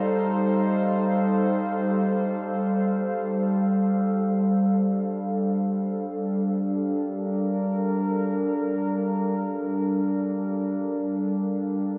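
A warbly, tape-like pad plays alone throughout this spacious, serene ambient piece in G minor, drifting in free time with detuned sawtooth and triangle tones, slow attacks and long sustained release, sitting up front with chorus, its own reverb and tape echo. Its nostalgic, lo-fi vintage colour moves from F7 over G to Gm7 at 4.2 seconds, spanning G3 to F5. The dreamy mix is soaked in a lush hall reverb with a 2.9-second tail, and this short passage is cut from a longer piece.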